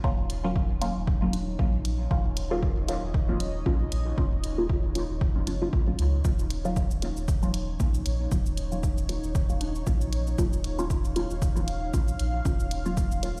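A hazy, deep dub techno excerpt heard through a big sound system in a bare stone room, running at 116 BPM in Eb minor on a single Ebm7 chord, with a punchy electronic kick, layered hi-hat and cabasa from 0.3 seconds, a round triangle-and-square sub bass, muted detuned chord stabs with a filter sweep, phaser, cassette tape and dub echo, a dark, slowly evolving sawtooth pad carrying chorus and 12-bit sampler grit, and overdriven congas tucked in the background from 1.3 to 11.7 seconds, with the bass, stabs, pad and congas all pumping to the sidechain.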